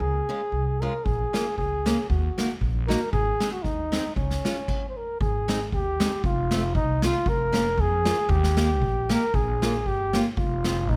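Bouncy and festive, this alpine folk dance excerpt swings along at 116 BPM in 2/4, moving from D-flat major to A-flat major at 5.2 s after a brief stop at 4.7 s, as a mellow, close-miked flugelhorn carries the melody with light vibrato over woody, thumpy pizzicato upright bass on gut strings, a picked archtop guitar with audible finger squeak, and an airy, polished drum kit with dark cymbals and a boomy kick that enters at 1.1 s, all under light reverb.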